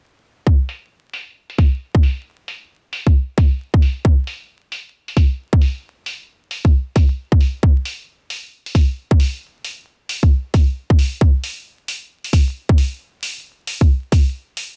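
Dry and dusted with vinyl crackle, this moody, skippy two-step UK garage excerpt puts a tight, layered electronic kick up front from 0.5 seconds beneath a much quieter overdriven analog hi-hat, darkened by a low-pass filter, that enters at 0.7 seconds over a swung sixteenth-note groove and carries on briefly by itself after the kick stops at 14.2 seconds.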